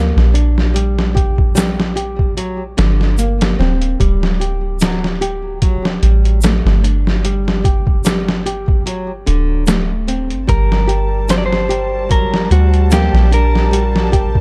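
Trip hop at 74 BPM in G harmonic minor, dark and cinematic, where a woody, boxy nylon-string guitar fingerpicks delayed arpeggios over a deep, round 808-style bass and a gritty, pitched-down sampler-style drum kit with a thumpy kick, a quiet egg shaker joins at 1.6 seconds, and at 10.5 seconds a clean, picked electric guitar melody with tape echo arrives alongside soft, sul tasto chamber strings holding Gmadd9 in a small, dark room.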